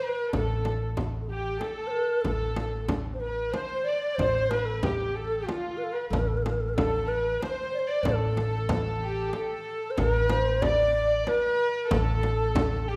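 A hollow, airy low ney carries the melancholic, soulful melody of this Arabic maqam ensemble piece in a straight three, shadowed by a floating, pure violin section bowed sul tasto with soft attack, while a woody pizzicato upright bass sits up front and a deep, close frame drum struck with hard hands joins at 0.3 s, all set in a reverberant recital hall before a new section arrives at 10.0 s in this short excerpt.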